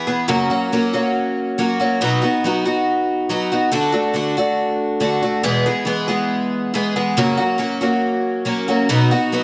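A picked twelve-string acoustic guitar opens this short rock fragment on its own, its octave-doubled strings giving a shimmering, jangly ring with a slightly boxy body. The mood is hopeful, carried by a straight 4/4 pulse at 140 BPM. The guitar sits up front and spans from E2 to G#4, moving through F#, B, D and E before returning to F# at 7.2 seconds and landing on B near the close. A moderate echo chamber reverb surrounds the playing, adding a sense of space around each picked chord. Lasting about 9.4 seconds, it plays as a single section lifted from a longer piece.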